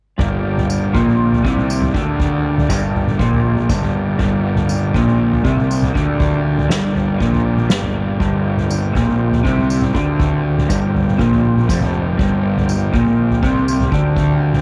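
Hypnotic and dark, this psychedelic rock excerpt rides a single G minor chord as a twangy, slightly broken-up electric guitar riff through a rotary speaker sits up front beside a fuzz-drenched picked bass, while a soft-mallet drum kit with a punchy kick and toms plays in a big room, a jingly tambourine joins at 0.7 seconds, and a thick tonewheel organ with key click and slow rotary holds sustained chords in the background, all bathed in spring reverb.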